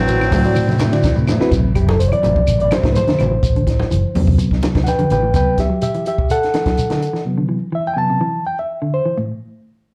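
Defiant and driving, this afrobeat excerpt at 125 BPM opens with a raspy tenor saxophone melody and a growling trombone second line, both with slapback echo, before a drum fill at 1.0 seconds hands the spotlight to a reedy, up-front electric piano solo that runs from 1.5 seconds over an Am69 chord. Underneath, a round, amped fingered bass and a compact cocktail kit with a high-tuned snare and punchy kick drive the groove. Grainy shekere, woody claves, low-tuned ringing congas, dark clean guitar arpeggios and background hollow-body guitar stabs round it out, all heard through a club PA with light reverb.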